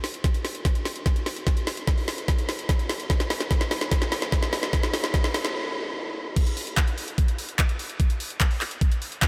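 A driving, alien trance cut at 147 BPM opens on an overdriven electronic drum kit with a woody snare, bright hi-hats, handclaps and crash cymbal, joined at 0.2 seconds by a knocking, up-front electronic kick with the same grit. A drum fill drives the build-up until the beat stops at 5.5 seconds, then the drop lands at 6.4 seconds. The dreamy mix is soaked in a huge ambient reverb that lingers for seconds.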